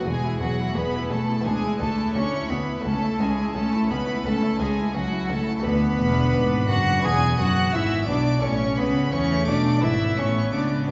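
In a straight 4/4 pulse, this festive, brilliant baroque-style concerto passage, cut from a longer piece, puts a focused solo cello up front on the melody with vibrato, while a rich violin section also carries melody high above and a second violin section adds an expressive line with portamento. A distant viola section and a muted, lute-like buff-stop harpsichord, very quiet and dry, fill in the accompaniment, as a double bass section and a smooth, even cello section hold the bass under chords moving from E through A/C#, Bm7 and E7. A lush concert-hall reverb sets the ensemble further back in the room, with a soft, rounded top end.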